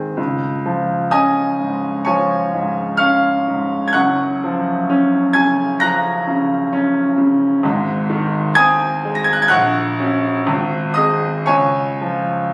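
A bright grand piano sits up front and plays alone for the whole 12.5 seconds of this short cut from a longer classical work, a romantic nocturne for solo piano. The mood is serene and dreamy, with an unhurried, elastic rubato that lets the beats fall unevenly within a gentle four-beat metre. The piano's brilliant, open tone and long sustain carry across a range from the deep bass to the high treble. The harmony drifts through a major seventh colour before settling back home in the closing second. The sound is that of a phone in a recital hall, with moderate room reverb, an added club reverb and compression.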